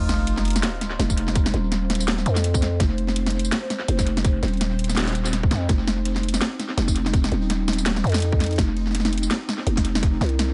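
A growling, buzzy 808-style bass anchors this cinematic, spacious half-time drum and bass excerpt, joined at 0.1 s by an up-front kit of cracking snare, bright hats and tambourine, dirtied with overdrive, tape echo and small-room ambience, and at 1.1 s by a tight, overdriven electronic kick. Over the opening impact and sub drop, a shimmering hammered santur with vintage 12-bit sampler grit rings in the background until 3.1 s, while a pulsing, detuned gated texture with chorus and reverb enters at 0.7 s. The swung groove sits in an echo-heavy mix with little reverb, and its top end is rolled off above 10.8 kHz.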